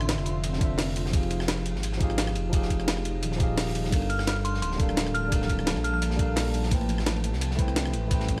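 A dark, detuned sawtooth bass sits up front in this short cut from a longer liquid drum and bass piece, rumbling deep between D1 and C2 with a beating unison tone. The tempo is 172 BPM in 4/4 with a slight swing on the 16ths, and the mood is rolling and lush as the chords move through Dm9, Fm9, Gm9 and Am9. A worn, slightly out-of-tune tine electric piano plays clean, direct accompaniment with delay throughout. Behind it, an ethereal, airy pad holds mellow, full-bodied chords, softened by ensemble chorus, phaser, built-in reverb and sidechain pumping. A glassy, crystalline FM bell carries the melody, with its main phrase running from 4.1 to 6.0 seconds, warbling through chorus, phaser and delay. The drums layer a gritty, compressed, pitched-up sampler-style kit with hi-hat, rim click and snare, a quieter saturated breakbeat kit with dark cymbals and a rolled-off top, and a knocking electronic kick that enters at 0.6 seconds, all set in studio reverb.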